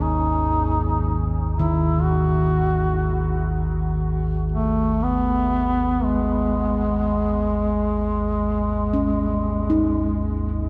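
A mellow, up-front duduk sings a folk-style solo in G# minor with vibrato and scooped notes, trailed by tape echo, over a deep, rumbling drone thickened with lush chorus, while a very quiet bronze singing bowl rings with slow beating and gamelan-type bossed gongs enter at 1.6 s with round, padded arpeggios, all in free time and tuned to A4 = 444 Hz, steeped in a cavernous cathedral reverb that makes this dark ambient drone feel ominous.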